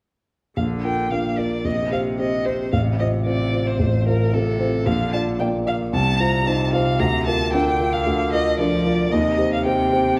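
In a straight 4/4 pulse, this cheerful, spirited passage from a quick classical-period piano trio movement places a rich, focused bowed violin melody with vibrato up front over an intense, smooth-topped cello second line and a dark, mellow grand piano accompaniment with audible action noise and an intimate, vintage character, all three playing together from 0.6 s to 10.2 s in a wet recital hall reverb.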